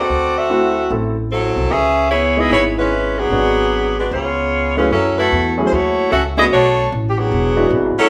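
A clear, up-front saxophone section carries the melody with light vibrato over woody pizzicato upright bass from the start, joined at 0.5 seconds by polished grand piano accompaniment, in a swinging, brassy big band passage cut from a longer piece, the band playing live together in a large studio with a wet reverb.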